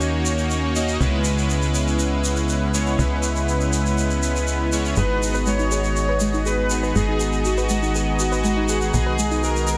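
A chorused analog pad with a filter sweep, soft supersaw stabs through digital delay, a punchy, nasal sequencer bass with tube saturation and a grainy, distant egg shaker open this emotional, driving progressive house excerpt at 121 BPM in G# minor, moving through D#m7, C#m7, G#m7 and B6. At 5.0 s a full-bodied supersaw melody with vintage 12-bit sampler grit and delay arrives alongside a soft, round pluck playing dark, chorused arpeggios in the background. A lush hall reverb and a dense, heavily limited modern master give the mix a polished, immersive sheen.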